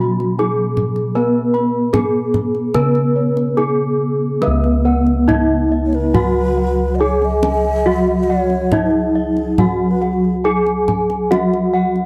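A ringing bronze metallophone struck with a wooden mallet carries the melody up front, its paired tuning giving a shimmering beat, over a mellow, padded metallophone accompaniment, round bossed-gong arpeggios, a soft bossed-gong bass in the background and the deep, hard-handed strokes of the kendang, all moving on uneven beats in this serene, ceremonial Javanese gamelan passage cut from a longer piece. At 4.4 seconds a second wooden-mallet metallophone adds higher arpeggios with a boxy small-room colour, and from 5.9 to 10.3 seconds a breathy low xiao floats a soft, unsteady second line with vibrato. The sound is a dry, close 1970s-style studio recording with light reverb and a small-room ambience.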